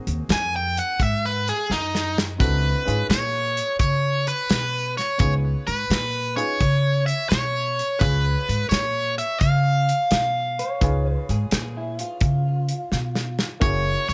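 Lightly reverberant and gritty, this laid-back electric blues shuffle puts a biting, bright overdriven guitar melody up front over a thumpy, woody pizzicato upright bass and a tight, small-room soul drum kit with fills at 1.7 and 12.9 seconds, while an intimate baby grand piano with audible action noise accompanies further back and a slightly broken-up guitar through a small old amp adds a compressed, tape-echoed second line from 10.6 seconds.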